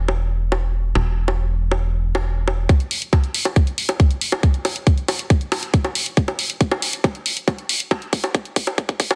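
Psychedelic trance at 138 BPM, hypnotic and intense, where a tight, punchy sequencer bass with a dark, detuned pluck drives the opening alongside electronic bongos and hi-hat until 2.7 seconds, when an up-front electronic kick drum enters and the bass stops, launching a build-up with a filter sweep, joined by a drum fill from 6.2 seconds, in this dense, heavily limited cut from a longer piece.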